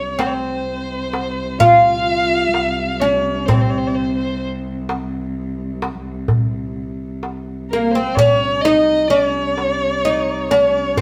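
A plectrum-plucked fretless oud leads from the first moment with a bright, woody melody over a dark bowed violin second line and a low, sul tasto cello drone on C2, joined at 0.2 seconds by a crisp metal-shell darbuka in a festive, passionate 10/8 Arabic maqam ensemble cut from a longer piece, played live in a moderate stone room.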